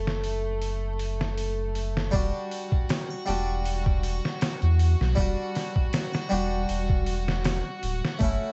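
Trip hop at 79 BPM in E dorian, brooding and dark, with a slight swing on the sixteenths, heard here as a short cut from a longer piece. A plucked, Italian-style harpsichord with two sets of strings carries the accompaniment, its full tone colored by harmonic tremolo and tape echo, with a filter sweep on it through the opening 2.1 seconds over an F#m7 chord. Beneath it, a deep, round sine sub bass with tube saturation sits up front, joined at 0.1 seconds by a compressed, pitched-down sampler-style drum kit whose gritty, thumpy kick, medium-tuned snare and hi-hats are all low-pass filtered for a tape-soaked feel. A distant, earthy chamber string section holds sustained, bowed chords with light vibrato, shifting with the rest of the band to Em7 at 2.1 seconds. Acoustic tube shaker and triangle slip in quietly in the background from 2.9 to 7.6 seconds, while a small room reverb and vinyl crackle, with the top end rolled off above 8.0 kHz, give the whole a dusty, enclosed atmosphere.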